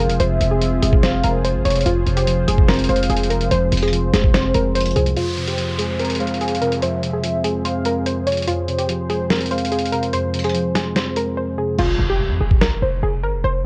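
A dusty, warbling pluck melody leads this menacing, melancholic half-time trap excerpt in F minor at 145 BPM, alongside a velvety synth lead with vibrato and tape echo, round, mellow electric-piano-like synth keys, a vintage analog pad in the background and a punchy, heavy 808-style bass, while a compressed, muffled sampler-style drum kit with a thumpy kick sits up front; from 5.2 s a filter sweep and an electronic downlifter arrive as the bass drops out, and at 11.8 s the hi-hats fall away and the bass returns under an impact, all over a worn cassette-tape ambience with warbly pitch drift.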